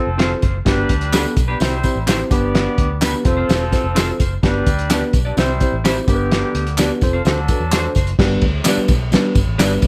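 A thuddy, cloth-damped drum kit with a fat snare and muffled cymbals sits up front in this uplifting, uptempo 1960s-style soul piece, alongside a round, foam-muted fingered bass, a worn, slightly out-of-tune tine electric piano, a dark semi-hollow guitar playing clean stabs through tape echo, a tight vintage horn section with light vibrato carrying a second line until 7.9 seconds, and handclaps with tambourine from 1.1 seconds, under a light reverb.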